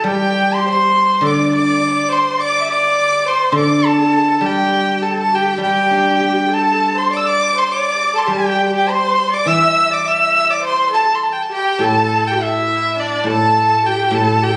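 Captured on a phone in a recital hall with moderate reverb, this graceful, festive excerpt of traditional Chinese chamber music in the D shang mode moves at 102 BPM in a straight 4/4, with an earthy, up-front erhu bowing the melody with light vibrato and portamento, a second, more focused erhu playing a lower line beneath it with vibrato and portamento, and a silvery, ringing guzheng, played with fingerpicks and also up front, supplying the accompaniment across the full 14.6 seconds.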